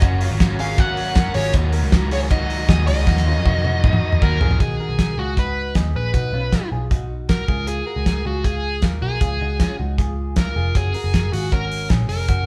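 A dark, smooth overdriven lead guitar carries the melody from 0.6 s in this nostalgic, breezy jangly indie pop at 156 BPM, over up-front, cloth-damped, thuddy drums with a fat snare, a round, foam-muted picked bass, bright phaser-treated clean guitar arpeggios, and a crunchy overdriven rhythm guitar and very quiet bowed strings with vibrato that both stop by 5.1 s, the band playing live together in one room with a large studio reverb.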